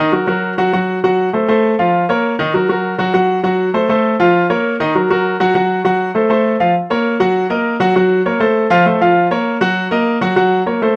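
In a moderate studio ambience with a short room decay, this fiery, danceable Latin excerpt at 199 BPM in 4/4 features a clear, polished baby grand piano playing solo and up front in Bb harmonic minor, cycling through Gb, F and Bbm with brief chordless moments before shifting at 6.8 seconds to a passage that adds Ebm to the progression.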